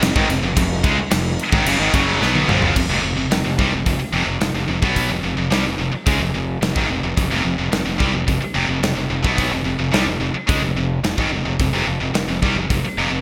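An up-front rock drum kit with a punchy kick, medium-tuned snare, bright cymbals, toms and gated reverb drives this heavy hard rock excerpt in straight 4/4, landing a fill at 2.2 seconds before the music moves into a new section at 2.8 seconds. A pair of high-gain distorted guitars pound out the riff alongside a growly, fuzz-soaked fingered bass, while a very quiet double-tracked overdriven guitar plays the riff only through the opening section. The sound is a bright 1980s-style digital production with light studio reverb, and the drums drop out at 12.8 seconds as the guitars and bass play on.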